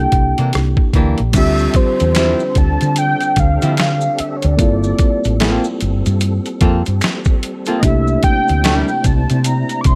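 A slow 4/4 groove at 74 BPM swings its sixteenths, setting up a late-night, sultry neo-soul and R&B mood in this short cut from a longer piece. A gritty, pitched-down boom bap drum kit with a thumpy kick, medium-tuned snare, rim clicks, hi-hat and crash sits up front from 0.1 seconds, alongside a round, woody fretless electric bass that anchors the low end. A reedy, lightly overdriven electric piano carries the accompaniment while a velvety synth lead, detuned and soft in attack, sings the melody through chorus and analog delay. A dark, clean archtop guitar adds a picked second line from 0.4 seconds, and at 1.3 seconds a clear tonewheel organ slips in behind with sustained chords through a slow rotary speaker, joined by maracas and finger snaps in the background. The harmony moves from C9 through Dm11 and Gm11 before returning to C9, all bathed in light reverb.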